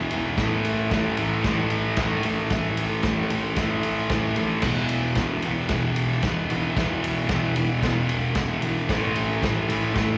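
A thick, dark fuzz guitar sits up front, its double-tracked, picked riff grinding between A5 and E5 power chords in the low register throughout this rowdy, swaggering garage rock fragment at 113 BPM in a straight 4/4. Behind it, a vintage acoustic drum kit drives the beat with a tight kick, medium-tuned snare, crash and ride, its muffled, lo-fi tone carrying dark cymbals and a rolled-off top. The whole thing sounds like a live gig heard through the venue's PA, with a touch of hall ambience.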